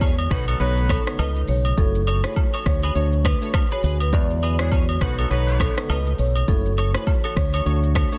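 Afrobeats with a sultry, hypnotic sway, this cut from a longer piece rides a swung groove from an electronic afro-pop drum kit with a deep kick, smooth hats, rim click, shaker and a softly clipped snare. A dark, round fingered dub bass sits up front, woodblock and agogo bells add color, and a woody marimba carries the melody through digital delay over a worn, slightly out-of-tune tine electric piano, a twangy clean guitar riff treated with analog chorus and delay, and a very quiet, ethereal FM pad. A tight, vintage horn section punches in briefly at 0.3 and 4.6 seconds, and the dry, dense, heavily limited mix keeps the groove close and forceful.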